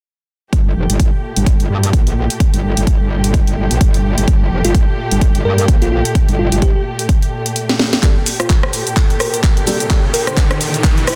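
Aggressive, gritty bass house at 128 BPM in G minor, cut from a longer piece, where a punchy, up-front kick and a house kit with cracking snare, handclaps, hi-hat, rim click and shaker drive a saturated, metallic FM wobble bass until 6.7 s, lush bowed strings hold sidechain-pumped chords beneath, a sparkling bell-like electric piano melody enters at 4.6 s, and after a drum fill a boxy grand piano stabs under a filter sweep from 8.0 s while a background riser builds from 8.8 s, all in a dense, heavily limited mix with little reverb.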